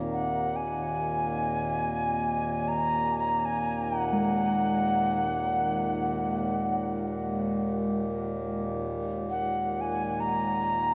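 World meditative music in free time and Eb dorian, spacious and unhurried, cut from a longer piece and bathed in a huge ambient reverb that leaves the mix dreamy and soft at the top. A dark, reedy pedal harmonium holds a breathing drone low in the range up front, while a pure quartz singing bowl, struck with a wooden striker and miked close and dry, rings brightly with slow beating through the full 10.9 seconds. Entering at 0.1 seconds, an airy clay alto ocarina carries the tongued melody up front with vibrato and a tape echo, its tone warm and lifted in the highs.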